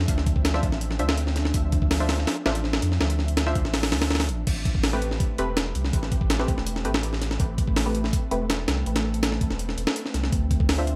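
Raw and frenetic, this 164 BPM drum and bass excerpt in A minor sets a gritty, pitched-up sampler breakbeat with a thumpy kick and high-tuned snare up front over a deep, round sub bass, while an ethereal pad with 12-bit grit and chorus sits in the background and a muted, filtered dub chord stab with echo arrives at 0.5 seconds, moving from Dm9 to Am9 at 4.5 seconds.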